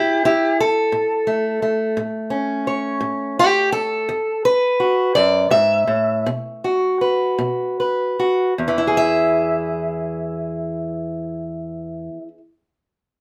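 A wet studio reverb gives this short cut from a longer acoustic country blues piece a roomy glow, with a single fingerpicked acoustic archtop guitar placed up front in a warm tone. The mood is rollicking and swaggering, set in E major in a slow 12/8 at around 50 to 58 beats per minute with a straight feel. The guitar carries the whole performance alone, ranging from E2 up to E5 as it moves from A to E and on to a B5 chord. Its opening solo passage slows down from 2.7 seconds until a new section arrives at 8.6 seconds, landing back on E. The guitar plays on until 12.4 seconds.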